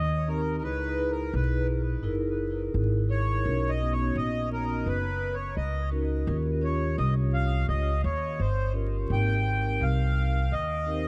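Swung 16ths at 85 BPM in 4/4 carry this relaxed, warm jazz-hop excerpt, where a reedy, slow-beating accordion, up front and soaked in tape echo, solos from the start until 9.1 seconds over a woody, dark pizzicato upright bass sitting equally forward, while a mellow vibraphone played with soft mallets enters at 0.3 seconds, its metallic ring carrying a slow motor vibrato and its own tape echo, as chords such as Dbm7, Gb13 and Bmaj9 pass through a small, echo-heavy room dusted with vinyl crackle.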